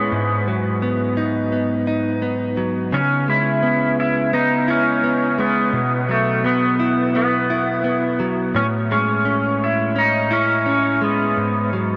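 A bright, twangy lap steel guitar carries the melody in this lonely, mellow indie pop piece, played with a slide and volume swells, its clean tone thickened by analog chorus and trailed by a diffuse ambient delay. Underneath, a clean electric guitar recorded direct picks out the accompaniment with a scooped, compressed sound, colored by subtle chorus and a vibrato effect. Both guitars sit up front and play from the opening moment, the lap steel stopping at 11.7 seconds just before the accompaniment ends at 12.0 seconds. The harmony moves at an unhurried, straight pace through G#m7, C#m7, Bsus4 and Amaj7 before returning to G#m7. A huge ambient reverb with a 9.2-second tail soaks the whole mix in a dreamy wash, and the passage is cut from a longer piece.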